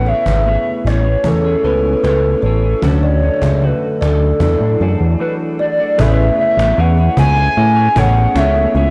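A warbling, wave-folded synth lead carries the melody from the opening over an Amaj9 chord. Alongside it from the start play a soft, woody kalimba in the background, a clean electric guitar with lush chorus and vibrato, round analog keys with phaser and a filter sweep, and a fat, detuned analog bass up front, with a snappy, distant cajon entering at 0.1 s. This dreamy, nostalgic bedroom pop fragment moves at 76 BPM in A major through Dmaj7 and E9sus4, with a break at 5.2 s, the kalimba stopping at 5.8 s and the harmony returning to Amaj9, all in a blown-out, overdriven recording with moderate spring reverb and tape echo haunting the lead and kalimba.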